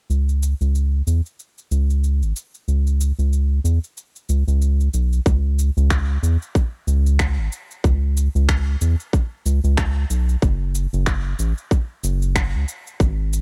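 Earthy and warm, this organic downtempo excerpt moves at 93 BPM in 4/4 with a 16th-note swing, set in C# minor and tuned slightly sharp to A4 = 443 Hz. A round analog bass sits up front from the start, deep and dark, with a fast attack and sustained notes that range from F#1 to E2, its wave-folded tone pumping under sidechain compression. Electronic shaker and finger snaps run throughout, overdriven and re-recorded in a small room, sitting lower in the balance. At 5.3 seconds a tight, overdriven electronic kick drum enters up front, marking the move into the second section and adding weight until 13.1 seconds. The production is dry, with little reverb, keeping the groove close and intimate as the excerpt ends at 13.4 seconds.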